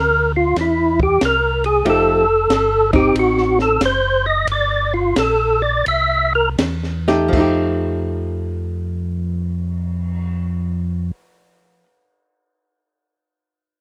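A swung 4/4 groove at 79 to 93 BPM, slowing down partway through, carries this bluesy, greasy soul jazz organ trio passage in F mixolydian, cut from a longer piece. A fat, lightly overdriven tonewheel organ sits up front with the melody and solo, its third-harmonic percussion, key click, chorus vibrato and slow rotary speaker colouring the line until it drops out at 6.5 seconds. Beneath it, a second, mellow tonewheel organ plays a round, clean bass line through its own slow rotary speaker, with a key click. A compact cocktail drum kit enters at 0.6 seconds, sounding acoustic and smooth in a small room, with a high-tuned snare, punchy kick, hi-hat, ride, crash and a cymbal swell under a rolled-off top. A hollow-body archtop guitar joins at 1.9 seconds with picked, compressed electric accompaniment, dark and also up front, as the chords move from C9 through F#dim7 and Gm before returning to F9. 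The rough home demo mix is dry, with little reverb.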